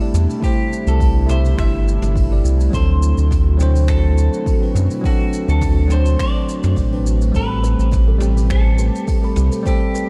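A gently swung 4/4 groove, with a light lilt on the sixteenths, carries this wistful sunset chillout clip, cut from a longer piece. Brushed acoustic drums with finger snaps, hi-hat, shaker and toms sit in a natural room sound beneath a punchy, layered electronic kick, while a deep, round analog bass holds the low end up front. A bell-like, bright electric piano plays the accompaniment over a soft, breathy pad with chorus in the background, moving from C6 to D7 at 2.7 seconds and on to Am9. A clean, picked electric guitar carries the melody, touched by subtle chorus and digital delay. At 7.3 seconds a mellow, woody kalimba enters with ringing arpeggios through its own digital delay, adding a vintage, hollow color to the dark, warm, nearly dry production.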